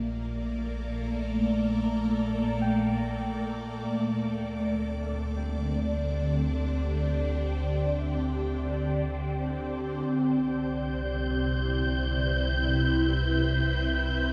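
Drenched in a huge, wet reverb with a 7.5-second tail, this ambient excerpt floats in free time, warm and weightless, tuned to A4 = 437 Hz. An up-front, ethereal pad of detuned, chorused layers with phaser and shimmer holds sustained chords from Bbmaj7 to D7sus4 and then Cmaj7 over a deep, round sine sub bass. Meanwhile, a fingerpicked Celtic harp rings out arpeggios in the background through diffuse delay and shimmer, fading out over the first 10.1 seconds before it stops at 10.6 seconds, as a dark, breathy, wind-like noise texture drifts in at 10.5 seconds on a high G6 and sustains to the close.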